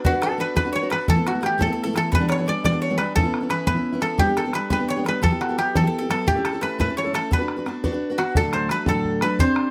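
Bright and lively, this short Celtic folk jig in B minor moves at 116 BPM in 6/8, cut from a longer piece. A mellow, woody koto played with fingerpicks carries the melody up front, touched with plate reverb, while a picked mandolin with double strings adds a second line in the background and a full-bodied jumbo steel-string guitar, finger squeaks audible, supplies warm accompaniment. A damped, tight bodhran keeps the beat, all captured with close, detailed microphones and light reverb as the chords turn from Bm through G and A before shifting to a new section on D at 8.4 seconds.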